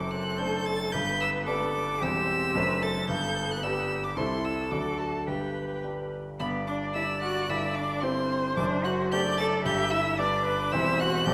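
Set in a moderate scoring-stage reverb, this quick, graceful piano-quartet passage in G major is cut from a longer classical-period movement and moves at 111 BPM in a straight 2/4. An up-front violin with focused vibrato carries the high melody while a rich, smooth-topped cello sings a second line beneath it, and a clear, more distant viola and a warm, present, polished grand piano fill in the accompaniment. All four parts play throughout, and at 6.4 seconds the spirited music moves into a new section, its harmony circling among G, C and D7 chords.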